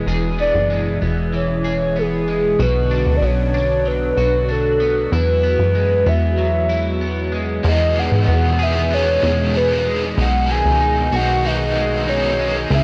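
A swirling phased analog pad, a twangy, slightly broken-up electric guitar playing chorus-and-delay arpeggios and a punchy, up-front plucky analog bass open this blissful, ethereal dream pop excerpt at 95 BPM in E mixolydian, with a hollow, woody clarinet-like synth lead carrying the melody from 0.4 s before the key brightens to E major at 7.6 s, where a dark, compressed overdriven guitar with tremolo joins the accompaniment over chords moving from Emaj7 to B6, all on a dry, gritty cassette recording.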